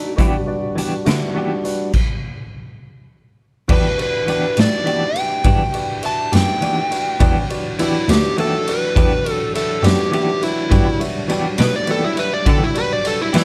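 An overdriven slide guitar takes the lead at 3.7 seconds with a fingered, up-front solo in this soulful, brooding slow blues in 12/8, cut from a longer piece and following a band stop at 1.9 seconds. Underneath, a clear, intense bowed cello with light vibrato carries the bass, and a raw garage drum kit sounds gritty and punchy in a bright stone room. A dark, clean semi-hollow guitar with tremolo and a full tonewheel organ with key click and slow rotary speaker fill out the chords, while a worn, mellow grand piano sits in the background and a slightly broken-up guitar through a small old amp is barely heard for the first second, all in a dry, dark production.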